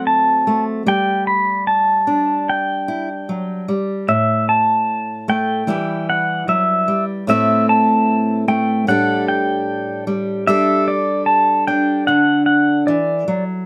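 In a straight 4/4 at 75 BPM, this wistful, reflective folk passage moves at an unhurried pace, tuned slightly below standard pitch at A4 = 439 Hz. A fingerpicked steel-string acoustic guitar carries the accompaniment from A2 up to C5, its fresh strings sounding warm and concert-like, with audible finger squeak adding a close, human detail. Above it, a clean electric pedal steel guitar sings the melody between D5 and B5, played with fingerpicks and shaped by volume swells and slide, its compressed tone glowing warm. Both instruments sit up front in a moderate studio reverb that gives the pair a gentle sense of space. The harmony drifts from F#dim to G5, passes through a chord-free moment at 4.1 seconds, then moves through Emadd9, Amadd9, Dsus4/A and Gsus2 before settling on D at 12.1 seconds. The pedal steel stops at 13.4 seconds, leaving the acoustic guitar to close this excerpt, which is cut from a longer piece.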